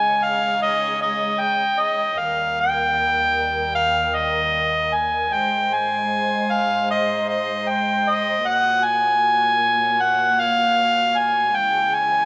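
Hopeful and nostalgic, this short folk excerpt sets a mellow, vintage-toned harmonica up front, singing a pop-style melody with scooped notes over a dark chamber string section whose bowed, sustained chords carry a soft attack and light vibrato, all heard from further back in the room through a wet plate reverb.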